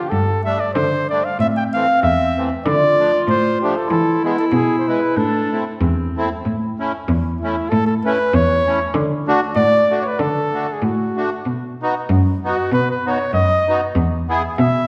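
Alpine folk from a dance band, bouncy and festive, moving in a swung 2/4 at 95 BPM with a rubato feel, in A minor before turning to A major at 6.4 s. An up-front flugelhorn with vibrato carries the melody over a rich, smooth bowed cello bass, while a reedy, sweet accordion with light tremolo tuning and a vintage, band-limited tone supplies the accompaniment. A distant, roomy clarinet adds a second line from 1.4 s until the key change, and the band sits in a wet concert-hall reverb in this passage cut from a longer piece.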